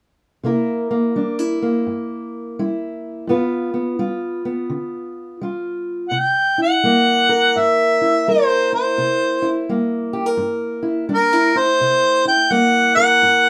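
Laid-back and swaggering, this excerpt of acoustic country blues moves at an unhurried 85 BPM in 4/4, with a swung eighth-note feel and a C mixolydian flavour. A fingerpicked steel-string acoustic guitar opens at 0.4 s, its dark, boxy parlour tone sitting up front as it carries the accompaniment over C7 and then G7. At 6.1 s a mellow harmonica enters with the melody in a jazz-tinged solo, shaped by light vibrato and scooped notes. The harmonica sounds somewhat distant and roomy, and it sits a little louder than the guitar. A moderate studio ambience gives the duo a natural, close-knit sound as the harmony returns to C7 beneath the solo.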